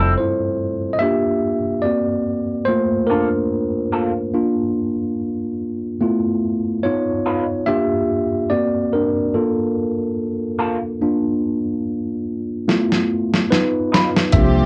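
A slow 72 BPM neo-soul groove in 4/4 with a light 16th-note swing sets a soulful, late-night mood as a worn, slightly out-of-tune tine electric piano with light overdrive takes a solo from 1.0 seconds over a warm, slightly broken-up wah-and-chorus electric guitar line, until a dusty, compressed sampler-style kit with a thumpy kick enters with a fill at 12.7 seconds and a round, dark fingered bass and bowed, lush strings appear at 14.3 seconds, all carrying the character of a cassette home recording in a lightly reverberant space.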